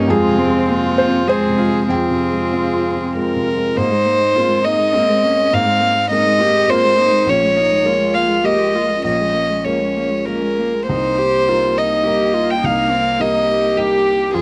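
A rubato 3/4 sway at about 94-106 BPM carries this reflective, longing neoclassical piece for piano and strings, cut from a longer work, where a single up-front violin sings the floating, airy sul tasto melody over a cello second line with light vibrato, a soft-attacked viola in the background and a felt-muted upright piano whose mellow, vintage tone and audible action noise sit intimately close, the whole passage moving through Fm, Abadd9, Bbm7 and Cm7 in a dry, detailed sound.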